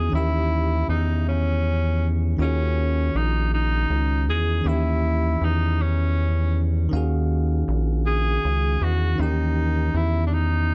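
A slow 6/8 R&B groove at 53 beats per minute carries a late-night, yearning mood through this short cut from a longer piece, with a rubbery, hollow square-wave bass sitting up front beneath a bell-like tine electric piano that rings with clean, direct chords. A clear tenor saxophone takes the solo melody with scooped notes and a vintage pop flavor over alternating Eb7b9 and Ebm11 harmonies. The production is dark and warm, with little reverb, and all three parts play throughout the 10.7 seconds.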